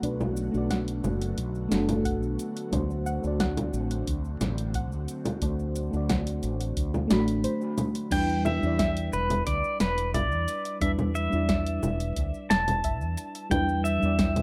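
Warm and smooth, this sunset chillout excerpt drifts along at 89 BPM in a straight 4/4, centred on E minor. A mellow FM electric piano carries the accompaniment, its dark, full-bodied tone coloured by chorus, phaser, cassette tape and tape echo, with a filter sweep running across it through the first 8.1 seconds. An airy, breathy pad holds sustained chords with a slow attack until 8.1 s, while a soft round pluck spins gentle arpeggios in the background and a round, dark fretless electric bass anchors the low end. The deep house drum kit sits up front, an overdriven mix of congas, crash, hi-hat, shaker and a punchy snare, and a dry, deep electronic kick stays tucked behind it. After a brief break at 7.5 s, the music moves from Bm7 and D7 to Em7, and a bright, twangy pedal steel guitar takes the melody from 8.1 s, its fingerpicked slide lines and volume swells trailing digital delay. Light reverb and a digital ambience wrap the rough, home-demo mix.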